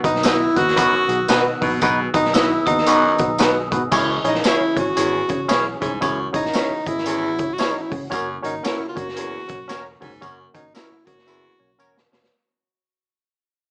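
Urgent and passionate, this uptempo 1960s-style soul cut swings its eighths in 4/4, heard through a small speaker in a moderate club room. A close-miked tenor saxophone carries the melody up front with light vibrato and a soft attack, while a raspy, gritty baritone saxophone plays a punchy riff from a distance, its notes scooped. A barky tine electric piano through a combo amp supplies the accompaniment, a clean semi-hollow guitar adds chorused stabs in the background, and a very quiet tonewheel organ holds sustained chords with key click and slow rotary swirl. The saturated raw garage drum kit sits up front with a boomy kick, medium-tuned snare, hi-hat and crash, joined by a round, dark, foam-muted fingered bass and a jingly tambourine in the background. A mellow glockenspiel played with soft plastic mallets rings out only until 3.7 seconds. The harmony opens on B, moves to C#m at 3.9 seconds as the music begins to fade, and reaches F# at 8.1 seconds, closing on a drum fill at 11.3 seconds.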